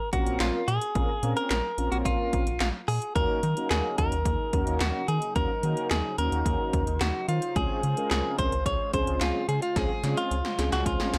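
A dry, gritty recording with little room sound opens on a driving, melancholic synth-pop groove at 109 BPM in 4/4, cut from a longer piece. A bright, clean electric guitar, recorded direct and placed up front, carries the melody from the start through a tape echo. Beneath it, mellow synth brass with a nasal, warbling chorus plays the accompaniment, while a rubbery, hollow square bass with tube saturation bounces along in a dark register. The 80s electronic drums give a punchy kick, gated snare, metallic hi-hats and handclaps, with a short room on the claps and hats. A very quiet, smooth analog pad enters at 3.2 seconds to hold sustained chords as the harmony moves from Bbmadd9 through Ebm7 to Dbmaj7, and a drum fill arrives at 9.8 seconds.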